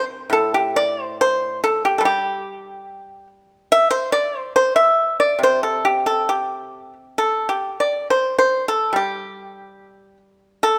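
The rhythm moves freely in a rubato 2/4, with the pulse hovering around 66-73 BPM so the phrases seem to breathe rather than march. This is a serene, flowing passage of Chinese traditional music for solo plucked strings, set in C gong mode and cut from a longer piece. A lone pipa carries everything from 0.0 to 10.8 seconds, reaching from A2 up to E5. Played with fingerpicks, the acoustic instrument sounds dry and percussive, sitting up front with a warm body to its tone. A light reverb gives the room a gentle sense of space around the plucked notes.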